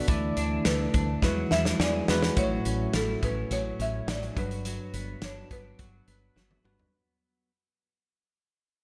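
A buzzing, woody marimba played with medium hard mallets carries the melody in this romantic, glossy 1980s-style pop excerpt in A major at 105 BPM, its dry, airy tone trailed by delay, over a bright, bell-like tine electric piano and a clean, compressed twelve-string electric guitar riff shimmering with lush chorus. A dark, round fretless bass and an up-front studio drum kit with a punchy kick, a medium-tuned snare and gated reverb fill out the straight 4/4 groove, with drum fills at 1.2 and 6.4 seconds as the harmony moves through Dsus2, Eadd9, A6 and Gmaj7. The music begins fading out at 2.4 seconds.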